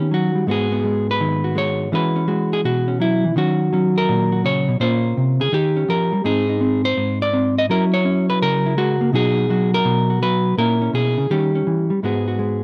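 Dry and close, with the open feel of an outdoor take, this brief, moody solo jazz passage features a lone hollow-body electric guitar, dark, clean and fingered, up front and swinging through rich changes such as G#m7, E69, Bmaj7 and A#m7b5 over about 12.6 seconds.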